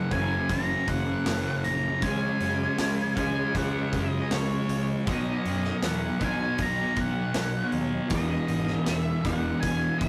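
Hazy and dreamy, this 79 BPM shoegaze and dream pop rock fragment in B major sets a warm octave-fuzz lead guitar melody over a dark, up-front thick fuzz guitar riff, a compressed clean electric guitar recorded direct in the background, a round overdriven fuzz bass entering at 0.1 seconds, and a big acoustic drum kit with punchy kick, medium-tuned snare and hi-hat, all moving through F#7, C#sus4, B and Emaj7 in a rough, saturated rehearsal-room sound with wet studio ambience.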